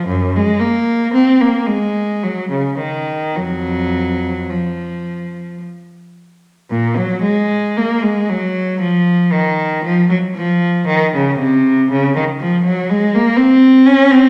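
A single bowed cello opens the recording, heard up front and close, carrying a baroque-style suite movement for unaccompanied cello in an introspective, flowing mood. The playing is in 3/4 with a rubato feel, so the pulse bends freely as the line unfolds. The tone is rich and smooth, with vibrato and an even touch, moving between F2 and Db4. The opening idea is stated once and then returns at 6.7 seconds, carrying on until the cut at 14.3 seconds, since this is taken from a longer piece. A wet recital-hall reverb surrounds the instrument, lending the solo a sense of space.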